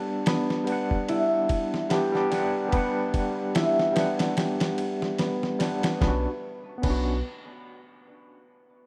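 A rough home demo mix set in a digital ambience frames this short, melancholic and dark trip hop fragment, cut from a longer piece at 73 BPM in B minor with a 16th-note swing. An overdriven tine electric piano carries the accompaniment up front, its barky, gritty tone pushed through a combo amp and colored by tremolo, a low-pass filter and tape echo. Beside it, a thumb-plucked concert harp plays ringing acoustic arpeggios, also softened by a low-pass filter and tape echo, and both parts ride a filter sweep over the opening Em7. A dusty, sampler-style soul drum kit comes in at 0.3 seconds, compressed and tape-warmed, with a thumpy kick, a medium-tuned snare, ride and crash cymbals, all placed in studio reverb. When the harmony moves to Bmadd9 at 6.0 seconds, a deep, round sine sub bass enters, holding a sustained low B with a fast attack beneath the closing bars.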